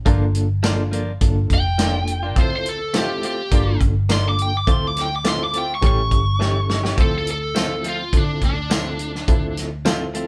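An overdriven lead guitar from a small cranked amp sits up front, carrying the melody from 1.5 seconds and breaking into a solo at 7.0 seconds after a drum fill. It rides over a brooding, mournful straight-eighth soul blues in D minor at 104 BPM: a reedy electric piano with fast tremolo, compressed clean guitar stabs with a warbly pitch drift, a dark, round, foam-muted fingered bass, and a natural, small-room soul drum kit of hi-hat, tight kick, medium-tuned snare and tambourine, all played live in one room with light reverb.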